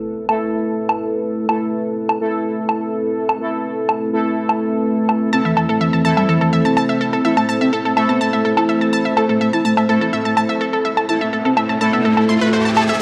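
The woodblock sets a straight 4/4 pulse at 125 BPM, tape-warm and up front, in this dark, dramatic melodic techno excerpt in A minor, tuned to A4 = 439 Hz. From the start, a deep, moody analog pad holds sustained chords with a slow attack and long release, colored by chorus and phaser and pumping against the sidechain, while fat, nasal analog synth brass punches out stabs with delay and a filter sweep. The harmony rests on an Amadd9 chord. At 5.3 seconds a soft octave-layered synth lead enters with a mellow, rounded melody, its sub octave and vibrato carried through phaser and dub echo, joined by a bright, warbling analog pluck spinning detuned sawtooth arpeggios high above. A riser creeps in from the background at 10.5 seconds, and a wet digital room reverb gives the whole mix a glossy sense of space.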